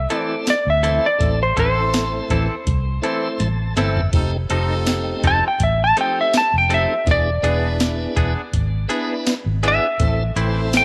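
Straight-eighth soul blues in A minor at 82 BPM, smoky and brooding, cut from a longer piece, with a dark, clean lap steel carrying an up-front slide solo over a round, foam-muted fingered bass and a soft vintage rhythm box with deep kick, crisp snare, metallic hats, tambourine and toms. A piping tonewheel organ through slow rotary speaker and light overdrive adds accompaniment and a fill from 3.0 to 4.1 seconds alongside a drum fill, while a twangy, scooped direct-recorded electric guitar places stabs with slapback echo. From 1.2 seconds a brilliant horn section holds sustained chords in the background as the harmony moves from Am through F7 and E7 back to Am, all set in light digital ambience with some lossy compression artefacts.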